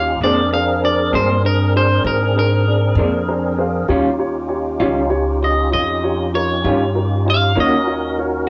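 Swaggering and rollicking, this slow blues excerpt in 12/8 moves at 65 BPM with a twangy, slightly broken-up electric guitar up front carrying a fingered solo line with vibrato, over a woody, slightly detuned upright piano that adds a brief fill at 3.0 seconds. A fat, lightly overdriven tonewheel organ holds sustained chords with key click, chorus vibrato and a slow rotary speaker, while a thumpy pizzicato upright bass anchors the low end and a second, compressed electric guitar through a small old amp picks accompaniment with tremolo from 0.2 to 7.8 seconds. The band plays live together in a small room with moderate reverb, moving through chords from Bb9 to Eb9 and Ebm7.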